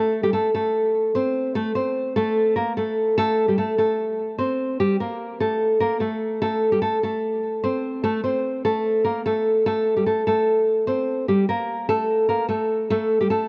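A lone nylon-string guitar opens this menacing, eerie hip hop fragment, fingerpicked in a classical style and sitting up front in the mix. Its fresh strings give a bright, acoustic bite, though a low-pass filter shaves off the top and lends the sound a muffled, shadowy cast. The tempo is 148 BPM in 4/4 with a half-time feel, so the pulse moves at an unhurried, brooding pace in A phrygian. After a brief opening on a rootless Gsus4, the guitar settles at 1.6 seconds into a longer passage that circles through Am, Gm and suspended G chords, its lines ranging from G3 to C5. Light reverb and a small-room ambience keep the setting close and intimate, and the piece is cut from a longer work, stopping at 13.5 seconds.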